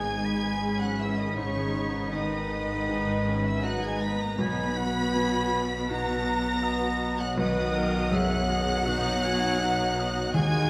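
A lush, vibrato-rich violin section carries the longing melody high above this bittersweet, rubato orchestral film-score excerpt at 80 BPM, joined below by a second violin line, a hollow, mellow flute ensemble and a close-miked oboe, while a clear grand piano with audible action noise, a close viola section, a dark, distant French horn section holding chords, a very quiet ringing harp arpeggiating, and bowed cellos and double basses fill out a G#m-to-B progression in a reverberant recital hall.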